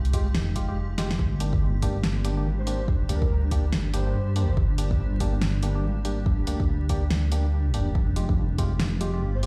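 Deep dubstep with a meditative, heavy mood, moving in a half-time 4/4 with a swung sixteenth feel, cut from a longer piece. A dark, detuned sawtooth bass rumbles up front with a beating unison tone, while a cloudy, evolving granular pad sustains chords quietly beneath, blurred by its own reverb. Hollow, organ-like stabs with a mellow decay are treated with chorus and dub echo, as a tape-warm electronic kit of deep kick, fat snare and hi-hat drives the groove, with a drum fill at 1.0 seconds. A soft, breathy flute-like lead warbles with vibrato in the background between 2.6 and 4.5 seconds, carried by ensemble chorus and dub echo, and returns briefly at the very end. The harmony moves from Fmadd9 to a long stretch of Gm before returning to Fmadd9 at 8.0 seconds, all heard as if played on a big sound system in a bare room, with large studio reverb and vinyl crackle.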